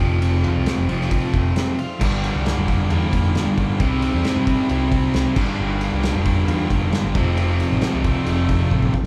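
Twangy, slightly broken-up arpeggios with a warbly pitch drift sit in the background as an up-front overdriven guitar riff and amped, picked electric bass open this brooding, angsty clip of quiet-loud alternative rock at 134 BPM in G dorian, joined almost at once by a gritty, loose indie drum kit with a punchy kick and dark cymbals, before a bright, tight distorted guitar riff and a very quiet, lush string-machine pad arrive at 2.0 s over Gm7, C and F chords, all played live in a large studio room until a drum fill at 8.7 s.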